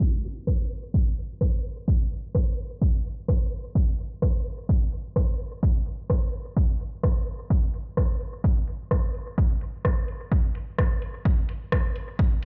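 Heard through a big sound system in a bare stone room and muffled by a low-pass filter, this nocturnal, hypnotic techno fragment at 128 BPM in a straight 4/4 carries a filter sweep across its full length. An analog electronic kick drum sits up front, punchy and overdriven, from 0.0 seconds. Behind it, a layered deep house drum kit with dark hi-hats and rim clicks, re-recorded in a small room, enters at 0.2 seconds and runs through low-pass filtering and dub echo.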